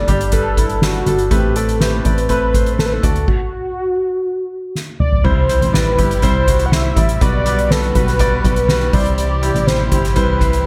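A velvety, detuned synth lead with chorus and vibrato carries the melody over a clear, polished concert grand piano and a punchy, round FM bass in this hopeful, piano-driven pop piece at 122 BPM in 4/4, joined almost at once by an up-front drum kit played with soft mallets, with a boomy kick, fat snare and dark cymbals. The band stops at 3.3 seconds, a drum fill comes in at 4.8 seconds, and at 5.2 seconds a lush, bowed symphonic string section enters in the background with sustained chords as the harmony moves from Gsus2, Amadd9 and D to C and Gmaj7/B. Light reverb gives the whole a small-room ambience, and this cut from a longer piece has a warm glow.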